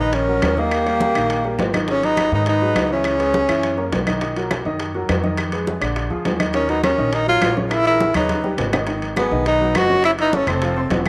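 A breathy tenor saxophone carries the melody up front in this fiery, sophisticated Afro-Cuban jazz excerpt, its mellow subtone coloured by light vibrato and scooped notes as it plays from 0.0 to 4.0 seconds and again from 6.6 to 11.0 seconds. A metal jazz flute traces an airy, straight-toned second line behind it in the same two spans, with a soft attack and expressive phrasing. Underneath, an upright piano with short sustain and a pizzicato upright bass with a thumpy, woody tone on steel strings run throughout at 206 BPM in 4/4 with a straight feel, moving through Eb minor harmony from Ebm7 to a closing Gb5. Ringing congas, tight high-tuned bongos played very quietly with soft hands, distant metal-shell timbales, and close claves sitting in the background drive the percussion, with a drum fill at 8.2 seconds leading into a new section at 8.9 seconds. A moderate echo chamber reverb adds a roomy sheen to this short cut from a longer piece.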